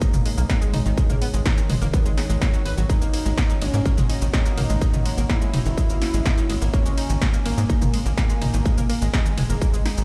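A distorted, layered electronic kick sits up front, joined from 0.1 s by a tight, punchy sawtooth sequencer bass with sidechain pumping, driving a hypnotic 125 BPM melodic techno groove in straight 4/4 that moves from G#m to F# at 2.9 s. A punchy analog drum machine adds hi-hat, ride, shaker, snare and toms, while a thick, detuned unison lead carries the melody with vibrato and digital delay over round, bright analog pluck arpeggios with chorus and dub echo. A deep, moody pad holds sustained chords in the background, and the whole cut sounds as if played on a big sound system in a bare stone room, with the kick dropping out at 9.7 s.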